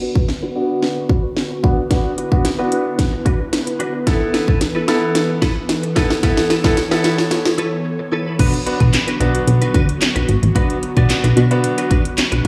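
A big arena sound, wrapped in a moderate, lush hall reverb with a touch of small-room ambience, frames this driving, bittersweet dance-pop excerpt in B minor at 111 BPM in straight 4/4. A clear, polished baby grand piano plays accompaniment through a low-pass filter and slapback echo. A twangy, direct-recorded clean electric guitar picks a riff through ensemble chorus, its own low-pass filter and slapback echo, while an airy, breathy pad holds sustained chords with chorus, sidechain pumping and a low-pass filter. The opening build-up moves from Bm to Esus4 under a filter sweep and a drum fill from the tape-warm house kit, whose punchy kick, cracking snare, metallic hats, handclaps and crash sit up front. After a short break at 7.9 seconds, the drop lands at 8.4 seconds on Bm, where a plucky, funky analog bass enters with a wave-folded, sawtooth-edged tone and sidechain pumping of its own. 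The piano stops at 12.0 seconds as the drop drives on.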